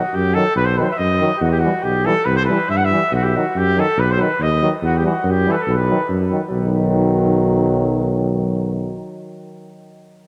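Soaked in a dreamy cathedral reverb and carrying a cassette-tape character, this short cut from a longer Balkan brass band piece sounds fiery and virtuosic at a brisk 141 BPM in 2/4, set in B phrygian dominant. A mellow trumpet carries the melody up front, with light vibrato and a delay that gives it a distant, roomy glow, until it stops at 6.1 seconds. Beneath it, a tuba with a smooth top anchors the bass, also up front and touched with light vibrato. A clear, vintage-sounding euphonium with a soft attack and a close-miked French horn hold down the accompaniment in classical style, the horn sitting in the background. The harmony moves between B, Em and C, and after a fresh passage begins at 6.5 seconds, the low brass carries the excerpt alone to its close.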